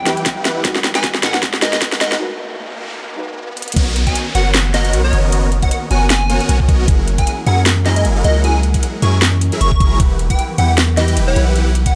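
Swung, half-time trap drums with a sharp snare and metallic hats sit up front beside a knocking electronic kick in a playful, euphoric future bass excerpt that builds with a riser, a noise sweep and a downlifter in the background, breaking at 2.2 seconds before the drop lands at 3.8 seconds. A soft, round, dark pluck with subtle chorus and tape echo murmurs behind the build only until the drop, while an airy, breathy pad holds chords throughout, and huge, lush supersaw chords glint through a phaser. A punchy, catchy unison lead carries the melody with vintage 12-bit sampler grit and tape echo over a deep, mellow 808-style bass, and the pumping sidechain pulse of the melodic parts gives the drop its bounce in light digital ambience.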